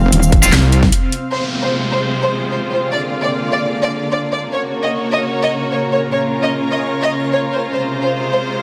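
A saturated, detuned wobble bass hits up front at the opening of this heavy, chaotic half-time dubstep excerpt, joined by an aggressive metallic FM wobble bass and a punchy, tape-warm electronic kick as the drop slams in. A brief burst of bright, double-tracked high-gain guitar stabs sits in the background with distortion and dub echo, while a cloudy, blurred granular pad drifts underneath the whole passage, pumping against the sidechain. The dubstep drum kit carries a huge snare, metallic hats, handclaps, shaker and crash cymbals, all dulled by low-pass filtering. After a short break beginning at 0.9 seconds, the bass falls away, and at 1.3 seconds a smooth-topped, lush violin section takes the melody with dub echo over a biting, focused string section holding sustained chords that also pump. An electronic downlifter sweeps through the early part of this string passage, and a moderate, lush hall reverb gives the mix a spacious size as the minor harmony rolls on.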